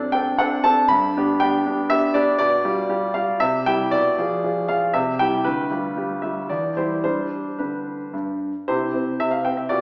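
A classical-period piano sonatina fragment in C major, elegant and graceful, moves in 3/4 at 108-121 BPM with a rubato feel as a solo concert grand with deep bass and a smooth, vintage tone spans D2 to B5, its phrases circling through G and dominant-seventh colours before settling on C at 8.7 s, all set in a wet recital-hall reverb heard from further back in the room with a small-speaker sound.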